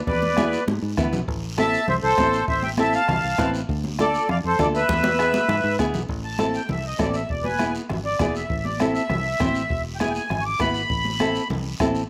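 A brisk, straight cumbia groove in 4/4 rolls along on a soft-beaten bombo, ringing high-tuned congas with a slapback echo set back in the mix, and a raspy guiro, while a punchy, foam-muted fingered electric bass holds the low end. Over fingerpicked flamenco guitar chords cycling through Am, Dm and E, a sweet, reedy accordion with light tremolo tuning sits up front and carries the melody, turning to a solo at 6.1 seconds. This passionate, danceable excerpt has a dry, open-air sound with little reverb.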